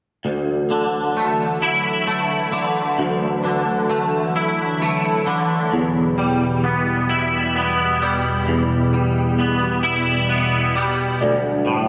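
Bathed in a lush hall reverb with a big arena sound, this euphoric, hopeful rock excerpt in 6/8 sets a twangy, clean electric guitar playing up-front arpeggios with chorus and slapback echo over a soft, warbling organ-like pad holding sustained chords, moving from Dadd9 to Em at 5.7 seconds, before a felt-muted upright piano adds mellow, intimate arpeggios at 11.2 seconds as the Dadd9 returns.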